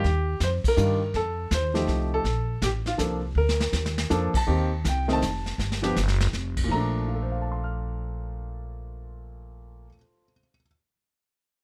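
A baby grand piano carries the melody up front, its natural, short-sustained tone ranging from Bb2 to F6 in this playful, relaxed jazz piano trio excerpt in Bb major. The tune swings in 3/4 at 162 BPM, moving through chords such as Ebadd9, F9, Bbmaj7 and Cm7, with a brief unharmonized passage before Bbmaj7 returns. Beneath it, a pizzicato upright bass with gut strings sounds woody and thumpy, sitting up front alongside the piano in the mix. A vintage kit played with brushes adds dark cymbals, a medium-tuned snare and a punchy kick, with a warm, rolled-off top, and it sits softer than the other two. It plays short fills and joins the band in accents before stopping at 6.6 seconds. The bass continues until 9.9 seconds and the piano plays on until 10.7, all captured with close, detailed microphones and light reverb.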